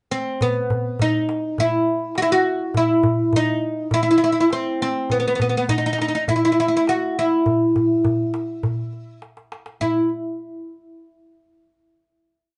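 Recorded live in one room with a moderate studio ambience and a softened top end, this short, melancholic and hypnotic Arabic maqam piece at 102 BPM opens with an up-front, bright, woody fretless oud, plucked with a plectrum on double strings, playing an ornamented modal melody from 0.1 seconds, joined at 0.4 seconds by a close, dry clay-shell darbuka with a natural skin beating out a low and high stroke pattern before a drum fill at 9.2 seconds leads into a final note.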